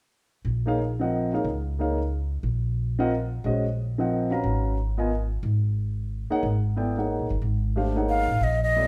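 A breathy, mellow silver concert flute enters at 8.1 s with a crisp attack and an unsteady, vibrato-laced line, arriving late in this hypnotic, spiritual modal jazz passage in swung 3/4, cut from a longer piece. Beneath it, a woody pizzicato upright bass with steel strings and an intimate concert grand piano, deep in the bass with long sustain and audible action noise, play over a Bbm11 chord before moving to Abm11 at 4.4 s. Each part sits up front, yet the group is heard from further back in a large studio with moderate reverb.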